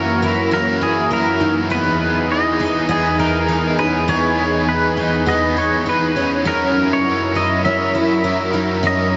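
Floating and dreamy, this short dream pop excerpt moves at 101 BPM in a straight 4/4, set in F# mixolydian with the chords shifting from F#7 to Emaj7 and back to F#7 at 6.5 seconds. An up-front pedal steel guitar carries the melody with a twangy, fingerpicked slide tone, its clean sound thickened by analog chorus and tape echo. Beneath it, a lush unison pad holds sustained chords, thick and warbling with a detuned sawtooth edge, slow attack and long release. A crunchy overdriven electric guitar adds accompaniment through tremolo and lush chorus, and a picked twelve-string acoustic guitar enters at 0.2 seconds with shimmering, octave-doubled arpeggios colored by ensemble chorus and tape echo. The whole mix is soaked in a huge ambient reverb, its top end rolled off above 7.7 kHz, with a faint mains hum underneath.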